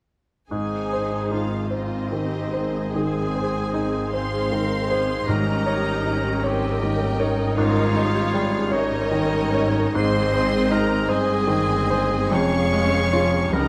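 Recorded close and detailed in a recital hall with moderate reverb, this passionate, lyrical fragment of a romantic movement for piano and orchestra unfolds in a rubato 12/8. A clear, polished baby grand carries the melody, shadowed by a soft-attack violin section in the background. A punchy solo clarinet and a focused upper violin section spin second lines over lush viola accompaniment with portamento, while mellow, very quiet French horns sustain chords above dark, woody cellos and distant double basses, and round, soft-mallet timpani sound briefly from 5.3 to 6.4 seconds.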